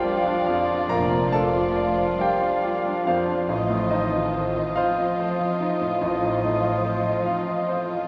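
A lyrical, passionate classical passage in Bb major, moving slowly and freely at 47 BPM in a rubato 12/8, with a clear, polished baby grand piano carrying the melody up front alongside a veiled, con sordino violin section. Around them a bright clarinet, a distant, dark cor anglais, a hollow little flute group and a second muted violin line add gentle counter-voices, while muted violas and a bassoon fill in the accompaniment, mellow French horns and trombones hold soft chords, and a roomy trumpet section adds dark stabs. Muted cellos and, from 0.9 to 7.1 s, double basses anchor the low end, all bathed in a wet scoring-stage reverb as the harmony moves from Bb to F7/A in this short excerpt from a longer piece.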